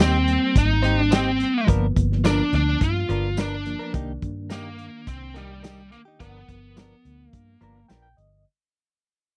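Straight-eighth 4/4 soul blues at 106 BPM sets a smoky, mournful mood in this short fragment, which moves through Abmaj7, G7#9 and Cm7 while fading out across its full length. Up front, a biting, overdriven lead guitar carries the melody over a dark, round, foam-muted fingered bass and a muffled, lo-fi drum kit with tight kick, medium-tuned snare, hi-hat and tambourine, while a clean, compressed, direct-recorded electric guitar adds stabs. Further back, a barky, reedy electric piano with light overdrive and fast tremolo plays through its built-in speakers and adds a fill from 7.3 seconds, the whole mix carrying a close, dry 1970s-style studio sound.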